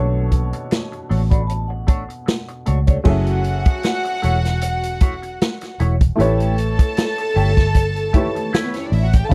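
A lightly swung 77 BPM groove in 4/4 from a vintage drum kit, entering at 0.3 seconds with a punchy kick, dark cymbals and a medium-tuned snare, sits up front beside a round, foam-muted fingered electric bass in this bittersweet, smooth slice of lush 1970s-style soul, moving from Bm9 through F#m7 to A7. A baby grand piano with audible action noise and short sustain provides accompaniment underneath while a twangy, compressed clean electric guitar plays a riff through wah and lush chorus, and a mellow vibraphone with soft mallets rings briefly around 1.3 seconds. From 3.1 seconds a studio violin section adds a soft-attack, sul tasto second line with light vibrato, all captured in a dry, close recording.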